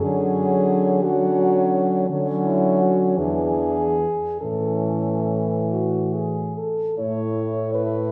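A mellow French horn carries the melody up front, singing between E4 and C#5 in a yearning, elegiac classical piece for horn quartet, cut from a longer work. It moves in a flexible, rubato 6/8 at roughly 45-59 beats per minute, counted in dotted quarters, in A major. A second horn with a smooth top sits in the background on an inner line, while a third horn plays the accompaniment in a punchy, roomy and distant tone with light vibrato, though it is still placed up front. A fourth horn anchors the bass up front, reaching down to E2. The harmony moves from Dmaj7 to E7 at 3.2 s and settles on A at 4.4 s, with a new section arriving at 7.0 s. A wet recital hall reverb, like a church or concert hall, surrounds the quartet.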